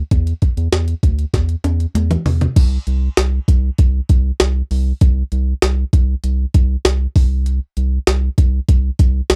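A round analog bass opens this brief, romantic and uplifting 1980s-style pop excerpt, its deep, wave-folded tone sitting up front as a gritty, pitched-up jungle sampler-style drum kit with a thumpy kick, high-tuned snare, crashes, hi-hat, tambourine and toms joins, playing a fill from 1.3 to 2.6 seconds before the next section, all captured in a dry, close studio sound.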